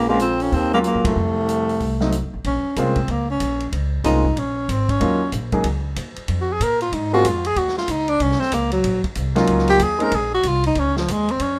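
Swinging and cool, this short cut from a longer small-group jazz performance moves at 188 BPM in Bb minor, with a 63% swing on the eighth notes. A warm, close-miked tenor saxophone carries the melody up front with a soft attack, subtone and light vibrato, then takes a solo from 2.4 seconds to the end. A distant, roomy baritone saxophone adds a brief second line with scooped notes, playing only until 2.1 seconds, and the band hits an accent at 1.0 seconds. Underneath, a woody pizzicato upright bass holds the low end throughout, while a natural-sounding baby grand piano comps up front and drops out at 7.2 seconds before a short return. A vintage drum kit with a tight kick, medium-tuned snare, ride and hi-hat sits low in the mix with a rolled-off top, and moderate studio reverb gives the group a natural room sound.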